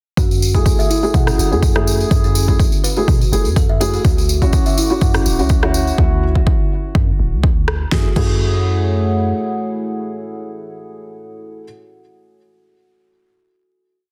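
Earthy and spiritual, this short afro house piece rides a punchy, overdriven four-on-the-floor kick, a boomy, syncopated 808-style bass riff, bright hand-played tambourine sixteenths and a woody kalimba sequence ringing through delay, with the bass and kalimba pumping. A felt-muted upright piano plays soft, boxy rootless chord stabs under a filter sweep until 6.0 seconds, while a deep house kit adds rim clicks, a fat snare and crash in two bursts. A moody, detuned analog pad with chorus and phaser enters at 4.7 seconds, pumping along with the piano, and it carries the final chord that closes the piece from 7.9 seconds.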